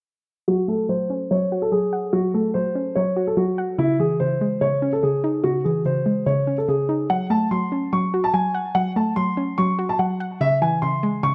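Hip hop with a half-time feel and an ominous mood, this excerpt sets a dark concert grand piano on the melody: mellow, intimate and boxy, with audible action noise, deep bass, low-pass filtering and tape echo. Beneath it, a soft, round pluck with a fast attack and decaying tail blends triangle, sine and sawtooth tones with a noise layer, chorus and low-pass filtering. Both parts sit up front, and a filter sweep runs until 7.1 seconds, when the music moves into a new section. The harmony moves from F#m to C#madd9, then from F#m to C#m, under a light studio reverb.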